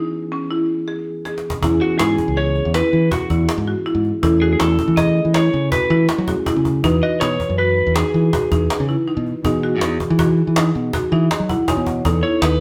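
A mellow, clean tine electric piano and a buzzing marimba struck with hard mallets open this bright, intricate progressive instrumental in E major, the marimba playing dry, woody arpeggios over an E6 chord while the piano sits in the background. After a brief cajon fill, the full band arrives at 1.6 seconds: a bright, up-front fingered electric bass joins, and a lightly driven lead guitar takes a solo with a dark, slightly broken-up, picked and compressed tone. The cajon adds a saturated acoustic pulse with faint snares, carrying the 7/4 meter at 161 BPM with a straight feel. The harmony moves through Amaj7/E and G#m7/E, and near the end the electric piano adds a short fill before a B7 chord arrives. The group sounds as if it is playing live in one room, bathed in a wet studio reverb, in a passage cut from a longer piece.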